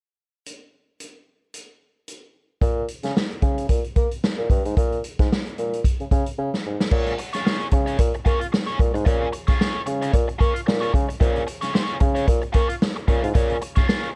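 Cool, driving funk in a cut from a longer piece opens with a vintage drum kit of dark cymbals, tight kick and hi-hat, adds a mellow bassoon bass line with light vibrato over a Bbm7 groove at 2.6 seconds, and after a drum fill brings in an overdriven, picked electric guitar with wah at 6.9 seconds, all set in a small room with a dark production.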